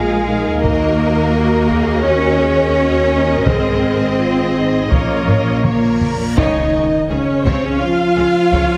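Cinematic, epic orchestral film score music at 84 BPM in 4/4, heroic and dark in mood, cut from a longer piece. Two lush, bowed violin sections carry the melody and a second line, one focused and smooth-topped, the other expressive with a soft attack, over a close viola section whose accompaniment glides with portamento. A rich, distant cello section and a soft-attacked double bass section hold the bass, while a mellow yet punchy French horn section sustains chords. Taiko drums struck with heavy sticks join at 0.6 seconds, and a drum fill leads into a reverse cymbal and a huge, bright impact sitting in the background, landing with a band accent at 6.4 seconds as the harmony arrives on Db. A dark, present trombone section adds sustained chords from 5.6 seconds, and the whole is bathed in a wet scoring-stage reverb with a heavily compressed, radio-like sound.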